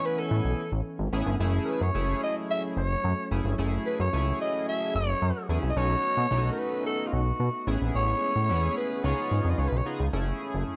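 A straight 4/4 funk groove at 110 BPM gives this slick, late-night excerpt its pulse, set in F# dorian and tuned slightly low to A4 = 437 Hz. A fat analog bass enters at 0.3 s, sitting up front with a saturated, nasal tone built from detuned sawtooth and square waves and shaped by a fast filter pluck. Over it, a glossy, retro polysynth carries the accompaniment with pulse-width modulation, a sub octave, ring modulation, a filter sweep and chorus. A lush, warbling unison pad holds sustained chords in the background, its slow attack and long release adding a full-bodied vintage haze. Leading the way is a raspy, growling alto saxophone with vibrato and a slapback echo, playing the melody up front until 9.9 s. The harmony moves through Amaj7, F#m7, B9, Amaj7 and C#9 before returning to F#m7, all inside a dark digital ambience.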